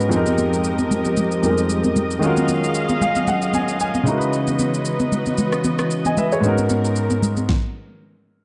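Swung sixteenths at 114 BPM drive this deep, soulful amapiano excerpt in F phrygian, where a soft-kicked, tape-warm electronic drum kit with rim click, shaker and fat snare sits under damped, high-tuned congas entering at 0.3 s, an intimate, up-front concert grand piano with audible action noise and deep bass moves through Fm11, Ebm11, Dbm11 and Abm11 and adds a fill at 2.8 s, and a close, bowed string section holds sul tasto chords with vibrato and sidechain pumping, all in a dark, lightly reverberant small-room sound before a stop at 7.5 s.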